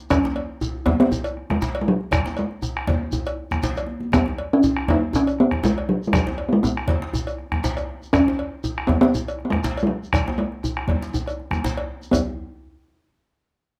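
A moderate small-room reverb frames this earthy, driving West African drum ensemble excerpt at 120 BPM in 4/4, with a light swing on the sixteenths and a B major pentatonic center. Up front, the talking drum carries the melody with a short ring, set against a round bombo in a live room, a metallic cowbell and a grainy, mellow shekere heard close and dry. Further back sit the hard-handed, medium-tuned djembe and bright, high-tuned congas in a large room, and a drum fill at 3.6 s punctuates the groove before everything plays through to 12.4 s.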